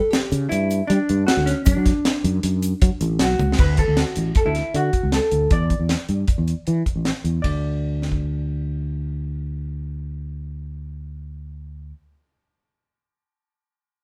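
Set in a straight 5/4 at 156 BPM, this brief cut from a longer progressive instrumental moves in an uneven meter that feels intricate and bright, centered in D major. A deep reggae drum kit sits up front, acoustic and dry, with dark cymbals, a high-tuned snare and a tight kick; it plays a fill at 3.4 seconds and drops out at 8.2 seconds. A grainy, very quiet egg shaker adds small-room sparkle only until 3.5 seconds. Also up front, a sustaining fretless electric bass sounds punchy and growly with a direct, amped edge, ranging from A1 to G3. Over it, a clean, fingered hollow-body jazz guitar carries the melody in a dusky tone between C#4 and D5, while the harmony moves through G5, D/F#, D and a rootless Asus4 before the chords fall away at 7.4 seconds. The band plays live in one room with moderate studio reverb.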